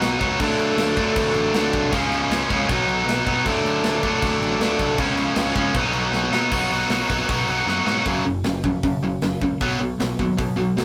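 A rough rehearsal-room recording with light reverb catches a rowdy, rebellious burst of straight punk rock, cut from a longer piece. Up front, a double-tracked, overdriven electric guitar drives its riff over D, C# and B chords, joined by a growling picked bass with an amped grit and a tight metal drum kit with an airy, polished sound and bright cymbals. Drum fills land at 6.1 s and 7.7 s, and from 8.1 s the riff moves to F#5 and B5 chords.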